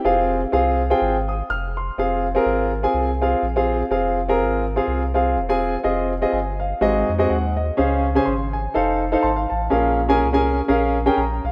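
Set at 124 BPM in 4/4 with a moderate swing on the eighth notes, this uptempo gospel excerpt in F minor carries a solemn, soulful mood. A clear, intimate baby grand piano plays accompaniment from start to finish, sitting up front with long sustain and audible action noise, ranging from Ab2 up to F6. Beneath it, a deep, round sub bass with a sine-like tone, fast attack and mellow sustain holds the low end between E1 and F2, mixed well beneath the piano. The harmony rests on F minor before moving through Fm7, Ab7, Dbmaj7 and F7 to Bbm7, and the piano adds a brief fill at 9.0 seconds. A lush hall reverb surrounds the instruments, though the overall sound keeps the rough character of a home demo mix.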